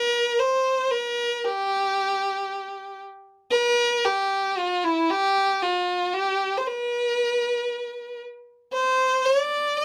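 Arabic music in free time, this short passage sits in maqam rast on G, tuned to A4 = 440 Hz, and carries a festive yet stately mood. A single bowed violin plays alone for the full 9.8 seconds, ranging from E4 to E5. Its tone is rich and smooth, shaped by vibrato and an even delivery. The violin sits up front in the mix, captured by close, detailed microphones in a dry space with little reverb. The passage is cut from a longer piece.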